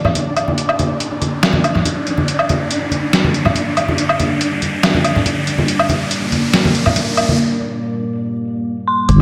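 Deep dubstep at 141 BPM in half-time G minor, this cavernous, meditative build-up cut from a longer piece sets a moody analog pad under a filter sweep alongside a flickering granular texture, ringing hard-hand congas with tape echo, an electronic riser and a muffled, overdriven trip hop sampler-style kit of hi-hat, snare and woodblock, then breaks at 7.4 seconds before an eerie detuned synth bell arrives at 8.9 seconds and a wobbling deep bass and thumpy electronic kick land at 9.1 seconds, in an echo-heavy mix of wet chamber reverb.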